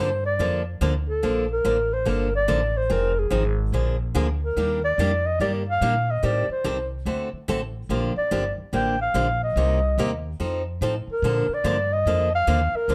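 A breathy, whispered clarinet with subtone, vibrato and scooped notes opens this swinging, charming passage of acoustic string swing in Bb major, taking a short solo for the first 1.2 seconds, close and intimate under a plate reverb. The bright, old-stringed picked acoustic guitar and a thumpy, gut-strung pizzicato upright bass carry the 144 BPM 4/4 swing through changes moving from Bbmaj7 through Ebmaj7, Gm9 and F7 back to Bbmaj7. All three sit up front in a moderate club room with a dark, warm production, cut from a longer piece.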